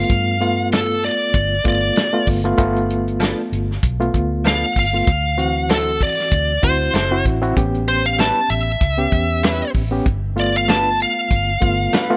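A smooth, overdriven lead guitar solos up front from the first moment over a reedy electric piano with tremolo, pushed lightly through a combo amp, in this gritty, rollicking soul blues cut from a longer piece at 96 BPM with a straight-eighth feel. A dark, round, foam-muted fingered bass and a tight soul drum kit with a medium-tuned snare and a rolled-off top keep the groove punchy and roomy as the chords move through G9, D9 and A9. From 3.2 seconds, a clean, compressed electric guitar recorded direct adds chorused stabs, all set in a studio reverb.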